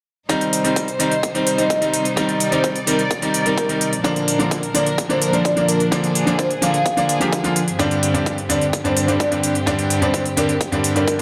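A straight 4/4 groove of crisp electronic hi-hats and a punchy, tape-tinged kick set back in a large room drives this powerful, emotional festival progressive house excerpt, where an up-front, brilliant grand piano with sidechain pumping and dub echo carries the accompaniment over intimate, sul tasto chamber strings that also pump, while a mellow soft-mallet vibraphone with fast motor vibrato, vintage 12-bit sampler grit and dub echo enters with the melody at 1.0 seconds across a Cm, Bb, Gsus4 progression.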